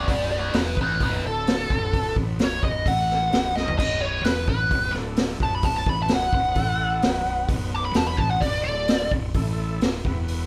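Blues rock power trio with a southern rock flavor, gritty and raunchy, heard in a short cut from a longer piece played by a band live in one room with light reverb. A biting, picked lead guitar with wah and overdrive carries the solo melody up front until 9.1 seconds, over a growly fuzz bass and a punchy vintage drum kit with dark cymbals and a medium-tuned snare that adds a fill at 3.6 seconds. Behind them, an overdriven tonewheel organ sustains thick chords with key click, chorus vibrato and a slow rotary speaker, sitting in the background.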